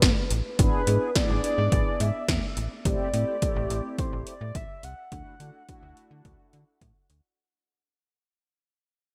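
Bathed in a lush hall reverb with bright 1980s-style digital sheen, this wistful synth-pop fragment fades out across its length as electronic drums with a punchy kick, a gated snare and metallic hats sit up front, a snappy slap-like FM bass adds metallic attack, dark detuned synth brass enters at 0.6 seconds with ring-modulated chorus, and a mellow horn-like lead with vibrato and portamento carries the melody.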